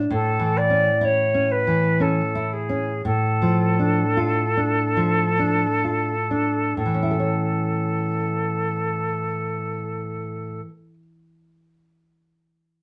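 A fingerpicked, full-bodied nylon-string guitar opens this tender romantic duo in A major, joined almost at once by a pure silver concert flute carrying the melody with vibrato and tongued notes. In a rubato 3/4 that ranges from 41 to 68 BPM and slows through the first 6.8 seconds, the harmony moves from A to Dm/A before settling back on A as a second section begins. The two players perform live together in one room with moderate studio reverb, giving this brief excerpt from a longer piece a tender, warm mood.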